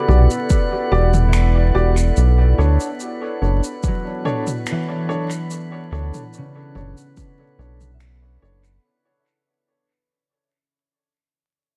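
Ambient dub at 72 BPM in a straight 4/4, this hazy, spacious fragment of a longer piece moves from Em9 to Bm9 at 2.2 seconds, tuned slightly sharp to A4 = 441 Hz, and fades out across its whole length. A round, dark analog bass sits up front with a deep, fast-attacking tone, anchored by a layered electronic kick drum that enters at 0.5 seconds and drops out at 7.3. Overdriven finger snaps, shaker and toms from an organic electronic kit ripple through dub echo, while a dark, woody upright piano places mellow stabs that also trail off into echo. A warbling, nostalgic tape-like pad holds detuned, lo-fi chords bathed in chorus and reverb, and a glassy texture of drifting overtones hangs calmly on a single high note. Thumb-plucked concert harp arpeggios ring softly in the background through analog delay, the last part to fade at 10.2 seconds, all set in an echo-heavy mix dusted with vinyl crackle.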